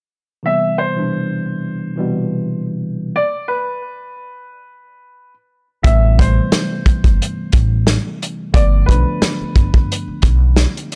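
Dark, tough boom-bap hip-hop at 89 BPM in A minor with a light 16th-note swing, cut from a longer piece. A worn, slightly out-of-tune tine electric piano with a cassette-tape tint comps beneath short-sustained, brilliant upright piano figures, and the harmony drops out for a break from 3.1 seconds. At 5.8 seconds a pizzicato upright bass with steel strings and a woody, saturated tone arrives alongside an up-front, roomy soul kit with a tight kick and medium-tuned snare, all under studio reverb.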